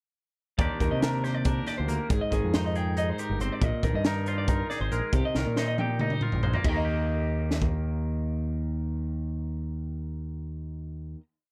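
Math rock with a Midwest emo tinge, this short, wistful and intricate piece moves in a straight 7/8 through a progression of jazzy seventh chords before settling on a final Eb chord at 6.6 seconds. A clean, twangy electric guitar rolls out fingerstyle arpeggios while a dark, slightly broken-up second guitar through a small old amp repeats a compressed, picked ostinato with slapback echo. Below them, a growling overdriven bass drives a syncopated riff, and a crisp, gritty fusion kit with a high-tuned snare and punchy kick sits up front in a pumping small room, landing a fill at 5.3 seconds before dropping out at 7.7 seconds, all in a dry mix.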